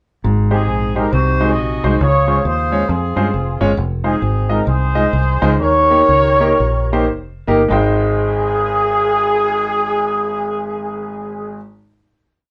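A wet studio ambience surrounds a band playing live in one room on this soulful, jubilant uptempo gospel piece in Ab major, swung in 4/4 at 102-136 BPM. A clear concert grand piano with deep bass and long sustain plays off-beat chords in drop2 voicings, while a punchy, foam-muted fingered electric bass walks and runs with slides. A warm, roomy horn section with vibrato enters at 0.5 s with a pop-style melody built from song-like phrases, and the breakdown slows from 3.8 s before the band settles on a final Abmaj7 chord at 7.7 s.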